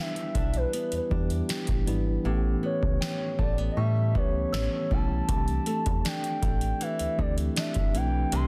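A smooth, gliding sine lead with vibrato and chorus carries the melody in this longing, late-night contemporary R&B excerpt at 79 BPM, over a mellow tine electric piano and a bright, fingerpicked nylon-string guitar touched with digital delay. A booming analog drum machine, its deep kick and crisp snare re-recorded in a large room and set up front, plays alongside a dark, metallic FM bass, while a soft, pure synth bell sits in the background until 5.6 s and the hi-hats drop out between 2.2 and 5.3 s. The chords move from Em7 to A9 to C69, all within a dense, heavily limited modern master with digital ambience.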